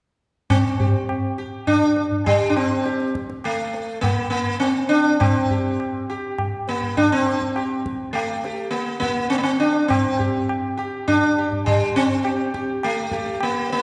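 Hindustani classical music in raga Bhimpalasi on G, this short excerpt moves at a steady 102 BPM in 4/4 with a straight feel and a meditative, solemn mood. The sitar carries the melody from 0.5 to 13.8 seconds, ranging from G3 to G4, its plectrum-plucked tone buzzing and shimmering with sympathetic strings while staying round and up front. Beneath it, the tabla plays throughout at a lower level, low-tuned and ringing, with a close, dry presence. The performance sits in a church or concert hall ambience, bathed in a wet scoring-stage reverb that lingers for about 1.8 seconds. Tuned slightly sharp of standard pitch, the recording feels like a moment lifted from a longer unfolding of the raga.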